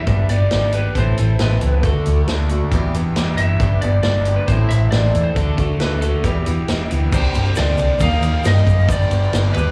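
A straight 4/4 groove at 136 BPM drives this jangly, warm folk rock and heartland rock excerpt in G major, heard as a live gig through a club PA, with a vintage drum kit of punchy kick and dark cymbals under a round, up-front fingered electric bass. A slightly broken-up lead guitar with slapback echo carries the melody over a boxy, picked swing-style acoustic guitar and a double-tracked garage guitar riff with overdrive and phaser, while a reedy accordion holds sweet sustained chords in the background. The chords cycle G, Am, D and Em before turning to Csus2 at 7.1 seconds, where a grainy egg shaker joins, then Eb before the return to G.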